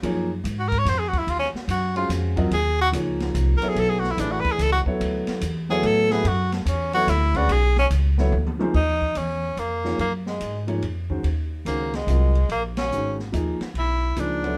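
A swung triple-metre pulse drives this hypnotic, searching modal jazz passage, cut from a longer piece and played live in one room with light reverb: a bright, up-front tenor saxophone with soft attack and vibrato solos from 0.6 seconds over a woody, pizzicato upright bass, a concert grand piano with deep bass shifting between Ebm11 and Bm11 chords, and a natural open drum kit with dark cymbals and a boomy kick that plays a fill leading into 8.7 seconds before a band accent at 12.7 seconds.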